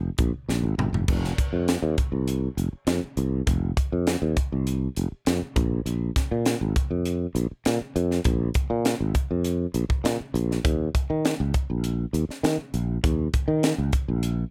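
Electric jazz fusion with a nocturnal, funky mood in a straight 4/4, cut from a longer piece: a bright, growly, direct sustaining fretless electric bass sits up front from the start, joined at 0.2 seconds by a crisp, airy, polished studio drum kit with a high-tuned snare, tight kick, hi-hat, crash cymbal and toms that plays a fill from 0.5 to 1.1 seconds, all in a dry mix with little reverb.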